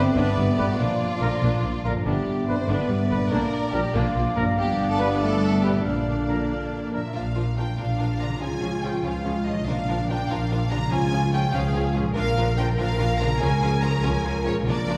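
A wet scoring-stage reverb places this triumphant, soaring cinematic passage, cut from a longer piece, further back in the room, where it moves at 96 BPM in a straight 6/8. An intense, distant symphonic violin section carries the lush, vibrato-rich melody throughout, over a smooth viola section, a focused studio cello section and an up-front double bass section that anchors the low end, while a rich studio violin section adds a second line from 0.1 seconds. In the opening half, a pure, hollow wooden flute and a clear oboe share a second line with a very quiet clarinet, as a mellow French horn section and a very quiet trombone section hold sustained chords and a vintage-toned trumpet adds stabs. These winds and brass drop away near 7.0 seconds, leaving the strings and a ringing, fingerpicked concert harp, whose arpeggios run in the background for the full 15 seconds. The harmony rocks between G and Bb at first, then shifts to alternate Db and Bb in the second half.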